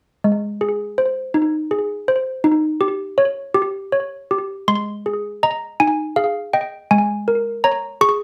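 Malleted handbells play alone from 0.2 s, their bright, damped, bell-like strikes from hard clappers sitting up front with a slapback echo in a moderate studio reverb. This innocent, tender classical lullaby moves gently at 54 BPM in dotted quarters in a straight 6/8, set in Ab major with A4 tuned to 439 Hz and spanning Ab3 to Db6. Over this short excerpt, the harmony moves from Ab to Eb7, then a second phase beginning at 4.7 s returns to Ab before ending on Bbm7/Ab.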